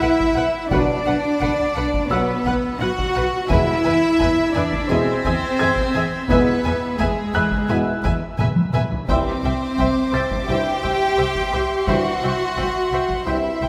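At a steady 86 BPM in straight 4/4, this tense, uneasy suspense-film cue sets floating, sul tasto violins over a rich viola section and an up-front dark cello section bowing above the double basses, while a clear grand piano adds high glints with audible action noise, distant taiko drums enter at 0.2 seconds and break into a fill at 8.4 seconds, mellow French horns and tight trombones hold background chords from 0.7 seconds, and a further violin texture joins at 3.5 seconds, the whole passage bathed in the wet reverb of a scoring stage as the harmony moves from Bm to E to C.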